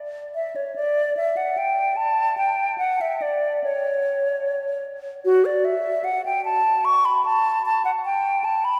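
In a rubato 3/4 at 74 BPM, this fragment of a baroque-style classical fantasia for unaccompanied flute unfolds in D major with a flowing, radiant mood. The solo concert flute enters at 0.3 s and plays through to 8.8 s, ranging from F#4 to C#6 with an airy, hollow tone, vibrato and a crisp attack, captured close and up front. Around it, a wet cathedral reverb with a 4.5-second decay sets the room far back, and the line is tuned to A4 = 441 Hz.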